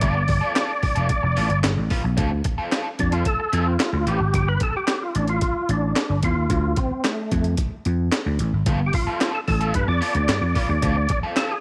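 A hypnotic, funky groove opens with a growly, punchy slap bass and a gritty, pitched-up breakbeat kit of thumpy kick, snare, hi-hat and handclaps beneath a full, percussive tonewheel organ through overdrive, chorus vibrato and fast rotary speaker, which takes a solo from 2.2 seconds, while a bright, crunchy wah guitar comps, drops out at 4.2 seconds and returns at 8.7 seconds, all in a light reverb.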